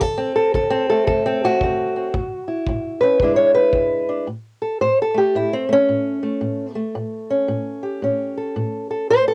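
A dark, woody, boxy fingerpicked old ladder-braced acoustic guitar on old strings sits up front in this swaggering, rollicking acoustic country blues fragment at 112 BPM with a swung 4/4 feel, carrying the melody over D7, A5 and E7 while a distant, roomy tight kick drum with brushes plays until 3.9 s, before the guitar takes a solo from 4.3 s, both parts carrying cassette tape colour in a home recording with light reverb.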